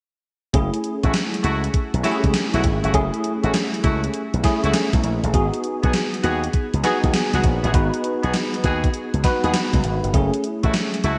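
A gated 80s digital drum machine drives this punchy, confident new jack swing excerpt, its thumpy kick and gated reverb snare carrying vintage 12-bit sampler grit up front, beside a bright, direct slap bass with an envelope filter and a bell-like tine electric piano with ensemble chorus that moves from F#m7 to G#m7 at 5.3 seconds, while a warm, tight horn section with light vibrato and delay adds jazz-style stabs from 1.0 seconds, the whole mix sitting in a lush hall reverb with bright 1980s-style digital production.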